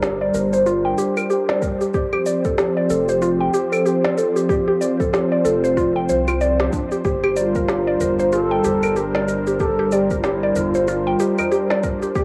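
A detuned sawtooth pad runs through this organic downtempo excerpt in G minor, holding smooth, full-bodied chords under a woody, mallet-like FM synth pluck that spins arpeggios with tape echo and a filter sweep running throughout. Underneath, a round, deep analog bass with sidechain pumping anchors the harmony. An electronic snare with cabasa and claves sets a swung 94 BPM groove in 4/4, and a soft electronic kick joins at 1.6 seconds. The chords move from G minor to F add9 and settle on G minor eleven, building a mystical, hypnotic mood. A distant, bamboo-toned bass bansuri enters at 7.4 seconds with a pure, straight-toned melody through analog delay, and a high-tuned, ringing tabla adds a very quiet, close touch at 8.0 seconds. Cassette tape colours the pad, pluck, drums and bansuri, while a moderate spring reverb gives the home recording a lo-fi intimacy in this passage cut from a longer piece.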